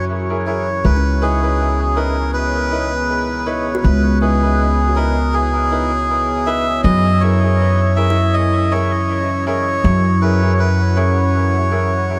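Ambient in C# dorian at 80 BPM, this deep, hazy excerpt from a longer piece has a lightly swung 16th feel and is tuned to A4 = 438 Hz. A woody, thumpy pizzicato upright bass and a reedy, breathy melodica sit up front, with the melodica's line trailing dub echo. Beneath them, a moody, detuned sawtooth pad holds sustained F#7 and C#m7 chords through chorus and a filter sweep, while a brilliant upright piano adds echoed stabs from 0.3 s and a hollow, ringing kalimba plays very quiet arpeggios from 1.0 s, all inside a huge reverb with an 8.2-second tail.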